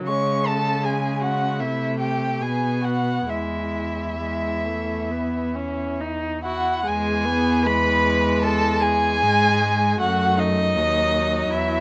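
Classical slow romantic movement for string quartet in E major, cut from a longer piece, with a warm, serene mood at a rubato 65-80 BPM in 4/4. A veiled, dark con sordino violin with vibrato carries the high melody up front over a second muted violin line shaded with portamento, a muted viola accompaniment with light vibrato, and a muted cello bass that also sits up front, each part bowed by a single player in light reverb.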